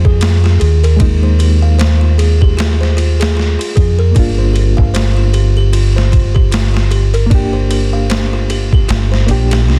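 A gritty, thumpy boom bap sampler-style kit with a high-tuned snare and ride cymbal sets a 76 BPM swung 4/4 groove for this brooding, melancholic trip hop excerpt, with a dark, round fingered electric bass sitting up front beneath it. A reedy, worn electric piano with tremolo and tape echo sounds slightly out of tune through its built-in speakers, while a delicate, tinkling music box plays bright arpeggios, also touched with tape echo. The harmony moves from Fm11 to Gm7 at 4.2 seconds, and the dry, dense, heavily limited master keeps the drums and bass forward.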